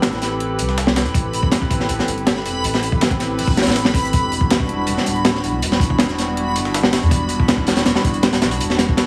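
A heavily compressed, radio-like sound with vinyl crackle, small room ambience and light reverb frames this atmospheric, nostalgic drum and bass excerpt in a jungle vein, cut from a longer piece. Up front, a crunchy acoustic breakbeat kit drives the groove with a punchy kick, a high-tuned snare and hi-hats, its gritty saturation and rolled-off top giving it a dark, smooth character. Behind it sits a second, sampler-style break of hi-hat and snare, pitched up, compressed and tape-warm, filtered to sit in the background. A soft dub sub bass, deep and round with tube saturation, sustains underneath as a warbling, lo-fi pad holds detuned chords through chorus and reverb, moving from Am9 to Em9 at 4.1 seconds. High above, a reversed, granular texture swells dreamily on a single bright note, washed in its own reverb.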